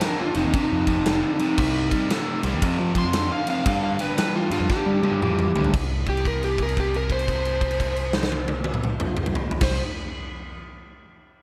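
Heard in a light reverb, this short cut from a longer piece has a heavy, smoky blues rock and southern rock feel, moving at 116 BPM in 4/4 with a swung eighth-note lilt in C minor. A dark, overdriven slide guitar played with fingerpicks carries the melody as a solo through the opening, then settles on a long held note once the second section begins at 5.7 seconds. Beneath it, a biting, bright, double-tracked electric guitar with spring reverb picks a low riff up front until 5.7 seconds, over chords moving through F5, Cm and G5 before landing on C5. A growling overdriven bass, heard both direct and amped, joins at 0.4 seconds, while a big acoustic rock kit with a punchy kick, medium-tuned snare, ride, crash and toms rings naturally in a large room. The drums throw in a fill at 4.7 seconds to mark the turn into the closing section.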